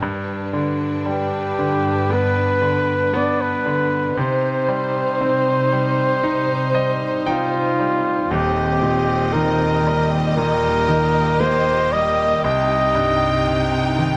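A dark, warm production with light reverb and a small-room ambience frames this heartbroken, melancholic pop ballad in C minor, a slow 58 BPM fragment cut from a longer piece. A brilliant, polished concert grand piano sits up front with deep bass, carrying the accompaniment throughout and adding a fill just before the second section. Beneath it, a studio string section holds soft-attack, sul tasto chords with a smooth top. At 1.1 seconds a close-miked flugelhorn takes the solo melody in a jazz style, its warm, vibrato-rich tone leading over harmony that moves from G to C minor. When the second section begins at 8.3 seconds, a distant, lush violin section adds an expressive second line high above as the chords shift to Eb6 and back to C minor.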